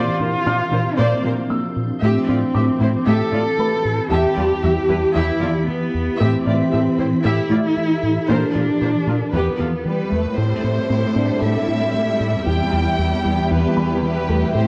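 Worn, warbling cassette tape with drifting pitch and a moderate scoring-stage reverb colours this brooding, futuristic cinematic piece, cut from a longer work. A distant, expressive solo cello sits up front with vibrato and portamento, carrying the melody until 10.1 seconds over lush bowed viola and cello sections, a swarming, granular drone with its own reverb, a very quiet detuned pluck playing arpeggios, a deep, dark analog bass riff, and a felt-muted upright piano with audible action noise and tape echo in the background. At 9.9 seconds a smooth, even violin section takes over the melody, and a focused second violin line joins at 10.4 seconds.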